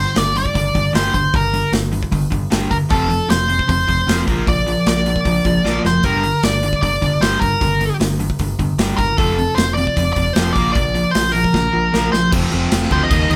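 A straight 4/4 punk rock drive at 153 BPM in G minor, angry and aggressive, cut from a longer piece and played live in one room with light reverb, where a nasal lead guitar with a parked wah and overdrive carries the melody up front over two warm, overdriven rhythm guitars grinding out riffs in the background, one of them compressed. A bright, growly picked bass anchors the low end, while a big acoustic rock kit with boomy kick, medium-tuned snare and bright cymbals sits up front, entering at 0.2 seconds and throwing in drum fills at 5.6 and 11.5 seconds. The chords cycle through G5, F, Bb and Gm before the section shifts onto F at 12.3 seconds.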